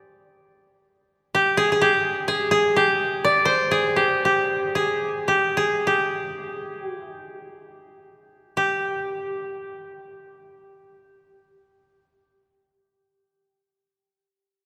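A solo koto, plucked with fingerpicks and placed up front, carries this calm, austere fragment of Japanese traditional chamber music, its bright, woody tone ringing between G4 and D5 and entering at 1.3 seconds. The rubato pulse drifts between 41 and 68 BPM in 4/4, slowing through the opening before a new section begins at 8.6 seconds, and the koto falls silent at 13.3 seconds. A long cathedral reverb from a church or concert hall surrounds the instrument, giving the spare lines a spacious air.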